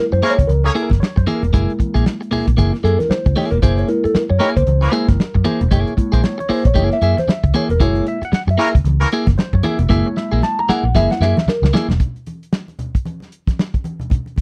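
A worn, slightly out-of-tune tine electric piano opens this gritty 115 BPM funk cut in F# mixolydian, soloing with phaser-tinged stabs over a single F#9 chord while bright, compressed clean guitar, a dark, foam-muted fingered bass and a tight, up-front soul kit settle into a 16th-note swing. Short, roomy horn-section bursts with vibrato and octave doubling recur, and soft-handed congas sit in the background of the dry, close 1970s-style sound. A drum fill starts at 9.9 seconds, and from 12.0 seconds the drums and congas carry on alone until the fragment ends at 14.4 seconds.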